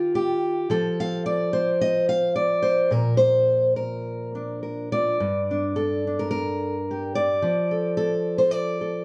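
Heard from further back in a reverberant studio room with a softened, muted top end, this short folk passage from a longer piece is a pastoral, gentle solo for fingerpicked steel-string acoustic guitar. The dark-toned guitar sits up front and ranges from G2 to F5, moving freely in rubato around 108 BPM in 4/4. It opens unaccompanied by any chord, settles onto Bb at 2.9 seconds, then turns to G minor at 5.2 seconds and closes on F6 at 7.4 seconds.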